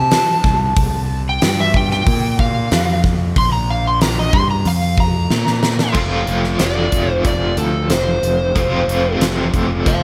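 Lightly reverberant and up front, this gritty, swaggering blues rock and southern rock clip opens on a dark, overdriven slide guitar solo over a growly, fuzz-laden fingered bass and a huge arena drum kit with a fat snare, punchy kick, crash and hi-hat in a big room. A drum fill at 5.3 seconds leads into a new section, where a biting, double-tracked overdriven guitar riff with tremolo enters at 5.9 seconds. The harmony moves through slash chords, power chords and suspended chords, with brief chordless breaks before landing on F.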